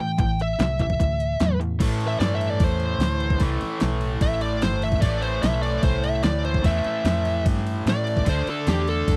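Blues rock in a power-trio, southern rock vein, this gritty, brooding 9.2-second cut from a longer piece moves at 148 BPM in a straight 4/4, rooted in A minor. A crunchy, double-tracked overdriven rhythm guitar picks a riff from the start, alongside a bright, smooth lead guitar sitting up front. The lead breaks into a solo at 1.8 seconds, riding over the harmony as it shifts from Am7 to Am9 and then to D7sus2 near the end. Underneath, a vintage fingered electric bass with a dark, round, foam-muted tone joins at 0.2 seconds with the drums. The pop drum kit has a layered, produced character, with a knocking kick, fat snare and warm hi-hats plus crash and ride, all pushed through overdrive and placed up front. The sound is dry and close, like a 1970s-style studio session with little reverb.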